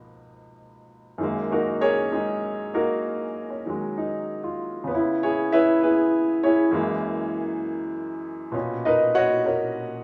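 Solo jazz piano, relaxed and sophisticated, moves at an unhurried 65 BPM in 4/4 with a gentle swing on the eighth notes and a loose, rubato feel. A clear baby grand carries the whole piece in F# major, sounding polished and present, sitting up front and ranging from deep bass notes to bright upper phrases. It opens on a rich Db13 before settling into the solo proper at 1.2 s on an F#69. From there the harmony drifts through C#m7 and F#9 to a lush Bmaj9 at 8.5 s. The piano sits in a large studio reverb with a live, small-room ambience around it, giving this short cut from a longer piece an intimate yet spacious finish.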